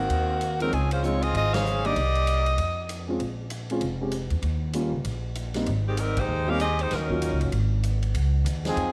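Joyful and energetic, this big band swing excerpt features a tight, edgy saxophone section with vibrato and a soft attack carrying the melody up front, over a woody pizzicato upright bass and a warm grand piano in accompaniment. A distant, roomy drum kit with dark cymbals and a punchy kick drives the swing, and the band hits an accent at 1.5 seconds. A bright trombone section enters at 8.7 seconds with a brief second line, set in light small-room reverb.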